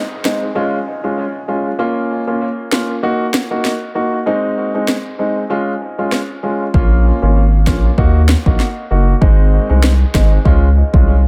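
A saturated, thick sub bass arrives at 6.7 seconds to anchor this tough, sultry dancehall excerpt, where a polished grand piano drenched in dub echo and an electronic afro-pop kit with a deep kick, sharp snare and rim clicks carry the opening break, a very quiet downlifter sounds through the first seconds, and a light digital ambience gives the echo-heavy mix its sheen over Ab, Db, Bbm and Ebm chords.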